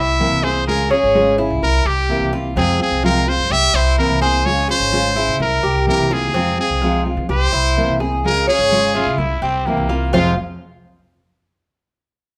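A straight 4/4 Latin groove at 127 BPM sets a sultry mood in F harmonic minor, cycling through C7, Db and Fm in this cut from a longer piece, with a woody, thumpy pizzicato upright bass underneath. A brilliant, forceful trumpet leads up front with vibrato and scooped notes, while a metallic Cuban tres picks arpeggios on doubled strings and a full-bodied nylon-string guitar fingerpicks the accompaniment, finger squeaks and all. At 9.0 seconds a raspy, growling second trumpet joins with a gritty second line, and the parts sit in a moderate large studio reverb.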